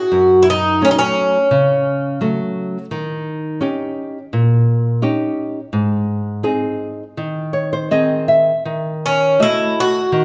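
A wet recital-hall reverb with a lingering tail surrounds this short excerpt from a longer fado-style ballad, and both instruments sit up front in it. The mood is mournful and passionate, moving in a rubato 4/4 around 85 BPM and tuned to A4 = 442 Hz. A fingerpicked nylon-string guitar with old strings carries the accompaniment throughout, its tone dark, woody and small, spanning the low bass up into the upper register while moving through F#m, D#7, G# and D#dim. An Irish bouzouki takes the melody in a narrow middle register, its picked double strings giving a metallic ring. It plays for the opening 2.2 seconds and then drops away. The guitar steps forward with a fill from 7.2 to 8.7 seconds, and the bouzouki returns at 9.1 seconds to close the passage.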